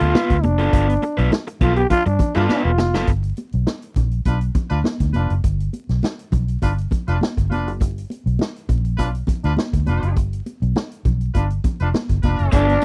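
Playful and energetic, this funk excerpt at 102 BPM in G mixolydian opens on a G9 chord with a raspy, gritty trombone solo full of growls, scooped notes and vibrato, backed by a bright, overdriven and compressed picked electric guitar, with a band accent and a drum fill before both parts stop at 3.1 seconds as the harmony settles onto G7. Underneath, a dark, round, foam-muted fingered bass and a big-band drum kit with a punchy kick and medium-tuned snare sit up front, joined by damped, high-tuned congas with soft hands and, from 1.9 seconds, a distant, loose warm horn section playing a second line. Trombone and guitar return briefly at the close alongside a very quiet, jingly tambourine, all in a dry, close 1970s-style studio sound with vinyl crackle.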